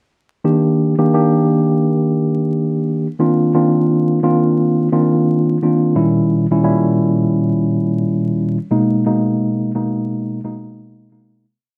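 Dark, crackling vinyl texture and a short, wet studio reverb frame this nostalgic, soulful hip hop piece, in which a lone mellow tine electric piano, colored by cassette tape and high- and low-pass filtering, sits up front with a swung feel, playing chopped Ebmaj7, Cm11, Eb7b9/Bb and Abmadd9 chords repeated like a sampled loop before fading out from 8.7 seconds.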